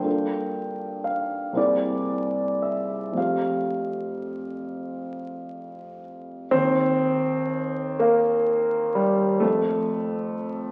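In a rubato 6/8 lilt at roughly 34-45 BPM, this dreamy, luminous impressionist solo piano fragment, cut from a longer piece, places an intimate concert grand up front with deep bass, long sustain and audible action noise, drifting from Gm9 through Caug7 and Fadd9 into a new passage at 6.5 seconds that moves from Ebsus2 to F, all wrapped in a wet recital hall reverb and the crackle of a very old 78 rpm record.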